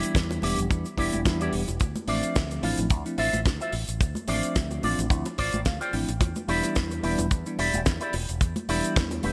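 A tight, dry kick drum sits up front in this groovy, sensual nu-disco excerpt, driving a 109 BPM 4/4 pulse with a light 16th-note swing in D dorian. Around it, a damped 70s drum kit adds hi-hat and a fat, mid-forward snare treated with gated reverb, while tube shaker, bongos and congas with hard hands sit in the background of a small room. A fingered electric bass runs through an envelope filter, direct and amped, pumping with the sidechain. An electric guitar plays a twangy, picked riff through its own envelope filter, subtle chorus and digital delay, and a clean guitar fill appears from 5.1 to 6.2 seconds. A bell-like tine electric piano supplies the chords, carrying vintage 12-bit sampler grit, sidechain pumping and delay, as the harmony moves from Em7 to Dm7 at 1.8 seconds and back. The whole piece has a crisp 1980s-style digital sheen with a moderate plate reverb.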